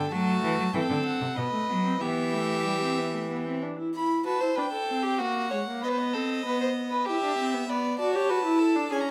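Solemn and serious, this brief portion of a baroque-style fugue for string quartet moves at 96 BPM in a straight 3/4, set in E minor. A close, airy-bowed violin carries the melody high above, its nasal, gut-string voice sitting softer in the mix than the other parts. Beneath it, a dark, reedy second violin traces an inner line up front, while a warm viola fills in the accompaniment from 0.1 seconds onward. A rich cello anchors the bass only briefly, falling silent at 3.6 seconds, just before the music turns from its opening section into a second one at 3.9 seconds. The harmony passes from F#dim through B7 to Em, later touching F#/A#, B, Em and Bm, and the period-style players sound in a moderately reverberant large studio.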